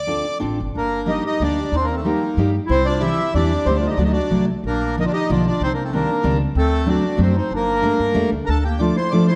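Nostalgic and whirling, this short musette waltz in G minor moves at 186 BPM in 3/4 with a rubato feel, cut from a longer piece. A reedy, up-front accordion carries the melody over a woody, thumpy pizzicato upright bass and a fingerpicked steel-string acoustic guitar with a full-bodied dreadnought tone, while a clear, jazz-style clarinet with light vibrato and a soft attack enters at 0.7 seconds as a quieter second line. A wet recital hall reverb surrounds the ensemble as the chords pass from Gm through Eb, C, D7 and Gmadd9 before settling on Dm at 8.5 seconds.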